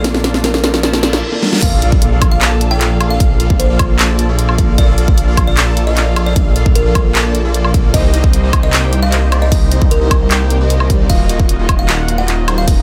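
Future bass at 152 BPM in a half-time feel, this lush, euphoric excerpt from a longer piece spends its first 1.6 seconds in a build-up, where a drum fill, a reverse cymbal and a very quiet electronic riser gather over a soft, felt-muted upright piano whose mellow tone carries audible action noise. At 1.6 seconds the drop lands with a punchy electronic kick and a very quiet impact, and the piano stops there. A big, bright polysynth riff, fat and detuned with ring modulation, a moving notch, lush chorus and a cassette-tape colour, pumps with sidechain alongside a thick, up-front detuned saw bass with chorus that also pumps. The dubstep kit sits up front with a huge snare, handclaps, hi-hat, crash and woodblock. Far back in the mix, a buzzing, woody kalimba plays a short, airy plucked melody through dub echo and sidechain pumping, over chords moving from Bbmaj7 to Cm7 and Ebmadd9 in a dry, close sound with little reverb.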